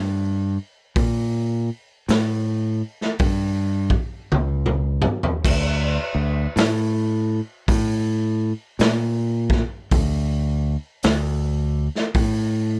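Overdriven fingered electric bass opens this brooding, sludgy stoner and doom metal excerpt alone, bright and punchy up front at a crawling 54 BPM in 4/4 with a swing on the eighths. A raw garage drum kit joins at 1.0 seconds, its punchy kick, medium-tuned snare, hi-hat, toms and crash sounding gritty and saturated with a rolled-off top in a small, pumping room. A drum fill from 4.3 to 5.4 seconds leads into the next section, and the dry mix keeps both parts up front.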